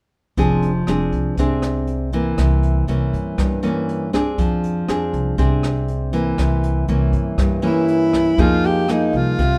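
A clear alto saxophone with jazz vibrato enters up front at 7.7 s to carry the melody in this melancholic, wistful bossa nova excerpt at 120 BPM in F dorian, over a fingerpicked nylon-string guitar with audible finger squeak on Fm6 and C7b9 chords, a woody, thumpy pizzicato upright bass with gut strings, and a dark, smooth brushed drum kit with a boomy kick and rim click in a small room, while a metallic vibraphone with fast motor vibrato rings in the background from 8.6 s, all under light reverb.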